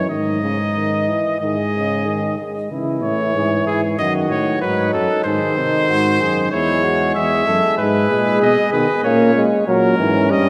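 A classical imitative canzona for brass ensemble, stately and joyful and cut from a longer piece, in which a bright, up-front trumpet sings the melody with light vibrato, a close-miked, mellow flugelhorn adds a second line from 0.1 s, a smooth-topped euphonium supplies the accompaniment, and a distant, roomy tuba holds the bass, the whole ensemble bathed in a long church reverb.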